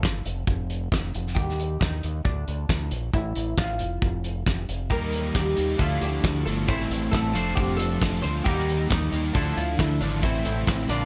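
A woody, plectrum-plucked oud carries a carefree, upbeat indie rock melody at 135 BPM over a growling, overdriven fingered bass and a loose, up-front drum kit with a fat snare and tight kick, joined at 4.9 seconds by a sludgy distorted guitar with ensemble chorus and a twangy, bright twelve-string electric guitar, all in a dark small-room production cut from a longer piece.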